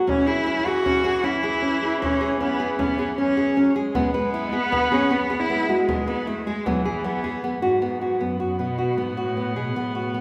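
Pulsing in a straight 5/4 at 155 BPM, this shimmering, playful chamber excerpt sets a rich, vibrato-laden bowed cello melody up front over fingerpicked nylon-string guitar arpeggios with finger squeak, a reedy, gut-string viola second line and a deep frame drum that drops out at 7.4 seconds, all heard from further back in a wet recital hall as the harmony moves from C#m to E and lands on B5 at 7.8 seconds.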